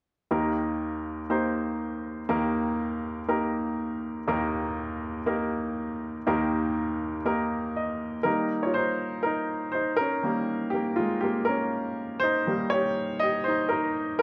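A lightly swung sixteenth-note groove at 121 BPM in 4/4 carries this hopeful, warm pop passage in Eb mixolydian, cut from a longer piece. A clear, polished baby grand piano plays accompaniment from Eb2 up to Eb5, sitting up front in a wet studio reverb. A brief fill at 7.5 seconds leads into a piano solo from 8.3 seconds to the close at 14.2 seconds.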